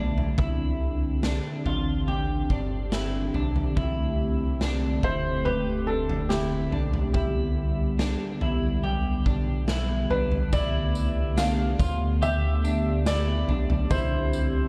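A felt-muted upright piano carries the melody from 5.0 seconds, its soft, intimate tone trailed by delay, over a hollow, flute-like pad with chorus and clean electric guitar arpeggios bathed in lush chorus and delay. Underneath, a round analog bass with a filter pluck and a raw garage drum kit sit in this blissful, dreamy dream pop excerpt; the kit is saturated and gritty, with a boomy kick, snare, toms, crash and tambourine in a pumping stone room. The production is dark and warm with light reverb, and the chords drift from Cadd9 through Am7 and Em to Gadd9/C before returning to Cadd9 at 13.9 seconds.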